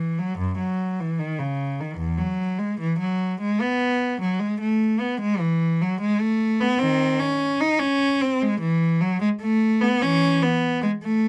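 In a flowing, rubato 4/4, this radiant, baroque-style suite movement for solo cello is cut from a longer piece and features a single bowed cello, rich and smooth with vibrato and even tone, captured up front by close, detailed microphones in a dry space.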